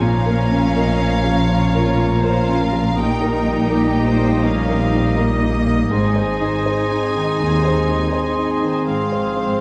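Cinematic orchestral film score in Ab major at 81 BPM with a rubato feel, moving and hopeful, where a rich, lush violin section carries the melody over second lines from a clear oboe, a clear background violin section, an airy, hollow flute and a warm clarinet, while a felt-muted upright piano with audible action noise, a smooth viola section, a mellow French horn section holding sustained chords, and bowed double basses and cellos in the bass move through Bbm, Eb/Bb, Ab and Fm/Ab, all set in a dark production with scoring-stage reverb.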